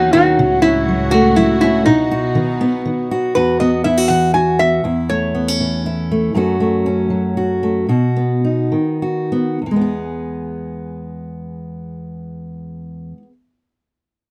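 A metal-body resonator slide guitar carries the melody up front, its metallic, nasal slide tone picked out with fingerpicks before it falls away at 5.8 seconds. This is a short excerpt of acoustic folk in E major, moving in a straight 3/4 between 96 and 121 BPM, with a nostalgic, peaceful mood. A fingerpicked steel-string acoustic guitar sits close beside it and carries the accompaniment through to 13.3 seconds, while a bowed chamber string section floats distant and soft-edged with pure, sustained chords only until 3.3 seconds. The harmony moves from F#m/C# and B through Esus2 and A/E, back to F#m and B, and the tempo slows between 6.3 and 9.6 seconds before settling on E. The sound is dry and close, in the manner of a 1970s studio, with a touch of light reverb, and the passage is cut from a longer piece.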